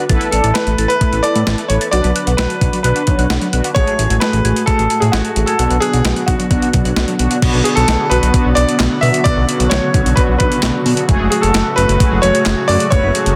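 A dense, heavily limited modern mix sits in a moderate plate reverb, giving this short synth-pop cut a melancholic, cool air in a straight 4/4 feel. A clear, present, polished baby grand piano carries the melody with tape echo, while mellow synth brass, dark and detuned with chorus and vibrato, holds the accompaniment throughout. An up-front, sampler-style 12-bit drum machine with a thumpy kick, re-recorded in a small room, drives the beat with snare, hi-hat, handclaps and crash over a fat, thick analog bass with a sawtooth edge. Through the opening, a soft, round pluck plays arpeggios in the background with chorus and tape echo until 7.4 seconds, when a bold, nasal analog pad enters with sustained, chorused chords. The harmony moves among Asus2, Bm and F#madd9 shapes.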